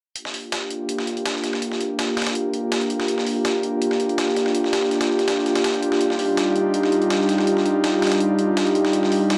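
Drum and bass with a jungle flavour, this dark, atmospheric excerpt, cut from a longer piece, moves at 164 BPM in 4/4 with a straight feel in G minor. An airy, breathy pad holds sustained chords between G3 and G4, its detuned sawtooth and triangle tones blended with a noise layer, a slow attack and a long release, sitting bright and up front with chorus. A filter sweep runs across the pad from 0.2 to 9.4 seconds as the harmony moves from Gm7 to Ebmaj9/G at 6.0 seconds. Beneath it, a dusty, soul-flavoured sampler-style kit plays hi-hat and snare, compressed and gritty, with a fat snare and both hats and snare thinned by a high-pass filter, set well back behind the pad. The recording has a digital ambience and a dry, gritty hardware character with the worn tint of cassette tape.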